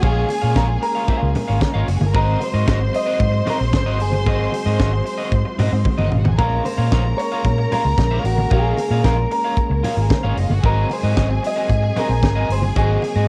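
A dark, foam-muted fingered bass sits up front in this driving, sultry disco excerpt, beneath a twangy, slightly broken-up electric guitar melody, a compressed second guitar playing accompaniment, a lush, distant bowed string section with tape echo, a mellow tonewheel organ holding chords in the background through a slow rotary speaker, a tight funk kit with a high-tuned snare and a drum fill at 5.9 seconds, and very quiet, low-tuned congas, as the chords move between Bbm7 and Ab9 on a dry home cassette recording.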